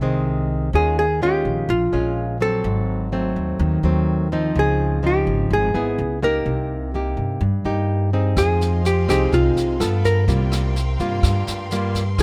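A smooth, melancholic bossa nova fragment at 126 BPM in a straight 4/4, cut from a longer piece and recorded dry with little reverb. A fingerpicked nylon-string guitar sits up front from the start, its classical tone carrying audible finger squeak, while a thumpy upright bass with gut strings adds a woody pizzicato foundation beneath it. At 0.8 seconds a dark, clean hollow-body electric guitar enters with a picked melody in a narrow range, placed prominently in the mix. The harmony moves through rich jazz colours, from a rootless Fm7 through Eb9sus4, Ab7b9 and Dbmaj9 before settling back to Fm7 and turning toward C7sus4. At 8.4 seconds a brushed drum kit with a boomy kick, rim clicks and a medium-tuned snare joins in a natural studio room, alongside a soft, bowed string section adding expressive, vibrato-laden sustained chords quietly in the background.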